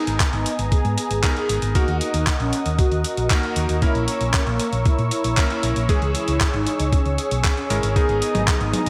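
This short excerpt from an italo disco track opens with a mellow synth brass melody over a smooth, warbling analog pad and bright electric grand piano stabs, all in G# minor at 116 BPM in a straight 4/4. The brass line is round and evolving, shaded by chorus, phaser, tape echo and vibrato, while the detuned sawtooth pad holds sustained chords with a soft attack and long release under its own chorus. The piano adds clangy, short-sustain accents, and a dark, punchy hollow-body electric bass joins at 0.1 seconds alongside a dusty soul sampler-style kit of handclaps, hi-hat and toms bathed in gated reverb. An up-front, thumpy electronic kick enters at 0.2 seconds, gritty and compressed, the loudest part of the mix. The harmony moves from G#madd9 through D#m, A#dim and C#m before returning to G#madd9, giving the passage a bittersweet, nostalgic glow under a light overall reverb.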